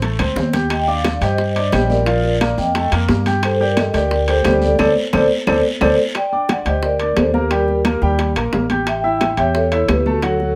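Set in a moderate studio ambience, this danceable, passionate salsa excerpt at 176 BPM carries a mellow soft-mallet vibraphone melody with fast motor vibrato over a clear baby grand piano, an up-front, dark, thumpy pizzicato upright bass on gut strings, ringing, saturated metal-shell timbales, high-tuned congas and round, low-tuned bongos in the background, woody claves, and a raspy guiro that drops out at 5.9 s. An opening drum fill starts the excerpt, and a second fill with a band accent leads into the move to G harmonic minor at 6.2 s.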